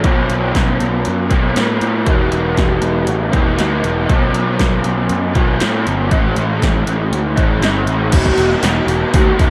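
Wistful and hazy, this shoegaze and dream pop rock excerpt moves at 118 BPM in a straight 4/4, cycling through Bsus2, Em and A before shifting to a new section on Em at 8.1 seconds. A dark, lo-fi, double-tracked garage guitar riff sits up front with overdrive and analog chorus, while a fuzzy, punchy picked electric bass adds overdriven weight underneath. An overdriven analog drum machine with a punchy kick and snare, hi-hat and crash, re-recorded in a large room, drives the whole piece, and plate reverb soaks the mix in a dreamy haze.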